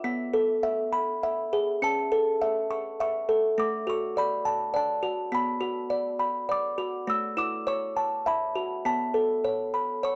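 A dry, close recording with a vintage 1970s studio character and light reverb frames this short excerpt of a sleepy, tender children's lullaby in 3/4. A lone music box carries everything, its delicate, tinkling plucked tones sounding small-boxed and band-limited, placed up front and touched with tape echo as it ranges from A3 to E6. After a brief opening section that ends at 1.8 s, a longer passage moves gently through A, D, Bm and back to A before settling on an Aadd9 chord at 8.8 s.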